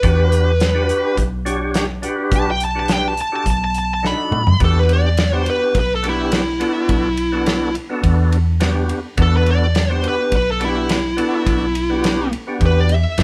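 A straight-eighth soul blues groove with a light sixteenth-note swing drives this smoky, soulful passage, where a bright, overdriven picked lead guitar solos up front over a percussive tonewheel organ with key click and a slow rotary speaker, a dark, round, foam-muted fingered bass, and a small-room soul drum kit with a tight kick and dark cymbals that plays a fill at 4.0 seconds, the band sharing one room with moderate reverb as the chords move from Em9 to B7#9 and back.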